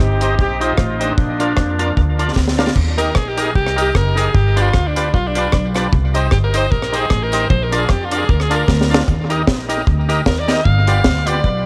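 Bouncy and joyful, this ska excerpt at 152 BPM in Eb major opens with a smooth-topped horn section carrying the melody over woody pizzicato upright bass, a dry, deep reggae drum kit with a high-tuned snare, tight kick and tape echo, a clean, twangy electric guitar in the background and gritty, overdriven tonewheel organ stabs with chorus vibrato, then after a drum fill at 2.4 s an edgy, punchy alto saxophone takes a solo full of scooped notes from 2.8 s, joined by a very quiet, jingly tambourine, all set in a small room with light reverb.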